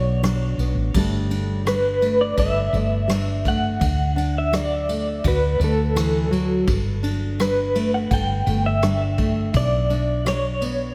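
A slightly broken-up, lo-fi electric guitar through a small old amp carries the melody up front with tremolo and a diffuse ambient delay in this reflective, intimate acoustic folk-pop ballad at 84 BPM, over a dark, fingerpicked nylon-string guitar with old strings and subtle chorus, a round, hollow-body fretless electric bass, and a soft brush kit with a punchy kick, ride cymbal and rim click, all moving through Bmadd9, Gsus2 and D in a dreamy mix soaked in church reverb.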